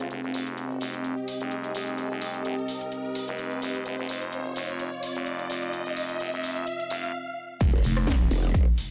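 A growling, wobbling bass with a bright, formant-filtered and saturated edge bursts in at 7.7 seconds, the aggressive centerpiece of this bouncy bass house excerpt built on lightly swung sixteenths. Before that, a build-up runs from the start. A deep, detuned sawtooth pad holds moody, full-bodied chords with chorus and sidechain pumping. A thick FM bass with a fast attack and tube saturation sits underneath. An up-front house kit run through overdrive carries a cracking snare, hi-hat, rim click, cabasa, ride and crash cymbals, re-recorded in a large room. An electronic riser climbs through the build-up, then a brief stop at 7.1 seconds clears space for the drop, which lands with an impact. There a punchy, overdriven electronic kick enters up front, while a very quiet, smooth acoustic kit of hi-hat and medium-tuned snare sits far in the background in a small room, all under light reverb.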